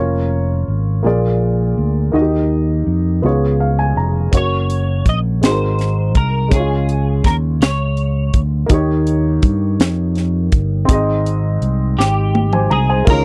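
A dry, close recording with a 1970s studio feel and little reverb frames this slow, hopeful gospel cut in Ab major at 55 BPM in 6/8, where a dark, mellow baby grand with audible action noise and a fingered electric bass, amped and punchy, carry the changes from the start, the piano adding a fill at 3.2 seconds. At 4.3 seconds a crisp fusion kit arrives with a high-tuned snare and punchy kick, and a moment later a clean, picked electric guitar with ensemble chorus sings a compressed melody before returning near the end alongside a drum fill. In the final instant a tonewheel organ with fast rotary speaker and key click sounds a sustained chord in the background as the progression resolves to Ab.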